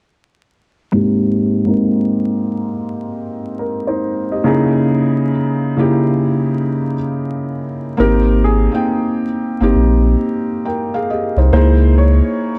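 A muted, intimate felt-dampened upright piano with audible action noise carries this dreamy, mellow lo-fi hip hop excerpt from 0.9 seconds, its swung chords softened by cassette tape and a filter sweep, until at 8.0 seconds a deep, round sub bass with transformer saturation and a woody, slightly detuned upright piano melody join, all set in a gritty hardware recording with vinyl crackle and light reverb.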